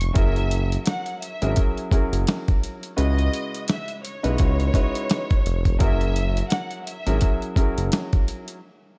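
Dark and reflective, this short boom-bap hip-hop cut moves at 85 BPM in 4/4 with a 16th-note swing, over chords shifting from F#7 to C#m11 and back. Up front sit a gritty, overdriven sampler-style drum kit with a thumpy kick, medium-tuned snare and hi-hat, and a smooth sawtooth-and-triangle synth bass with fast attack and sustained notes. Beneath them, a vintage grand piano with short sustain supplies filtered accompaniment while a bright, lush violin section carries the bowed, vibrato-laden melody close in a small room, the strings dropping out at 7.4 s before the piano and drums stop at 8.6 s.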